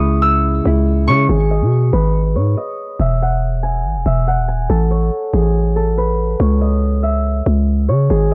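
Cold, tense half-time drill hip hop, cut from a longer piece, with a ringing fingerpicked Celtic harp carrying the melody over a growling, buzzy 808-style bass that sits up front. Soft, round electric-piano-like synth keys with chorus and a mellow low-pass tone accompany only until 1.3 s, where a filter sweep begins and runs to the end as the chords move from C#m through G#m, E and Amaj9 and back to C#m. The small room gives a dry, gritty sound with transformer saturation.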